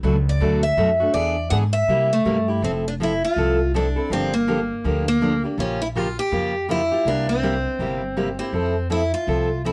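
A brisk swing at 162 BPM in 4/4, with eighth notes swung at 60%, drives this playful piece of acoustic string swing in the jazz manouche style, set in F major. An upright bass, plucked with a woody, thumpy gut-string tone, anchors the low end from the start, while a picked steel-string acoustic guitar on accompaniment, bright with fresh strings and audible finger squeak, sits up front beside it. A second picked steel-string guitar, a full-bodied dreadnought, carries the melody from 0.3 s and stands a little louder than the other two parts. The harmony moves from Bm7, E7 and C7 into a passage running Fmaj7, Gm7, Bbm6 and C7 before settling back on Fmaj7 at 8.5 s. Light reverb surrounds the trio, and a worn cassette-tape character adds a warbly pitch drift that gives this short cut from a longer piece an aged, wobbly charm.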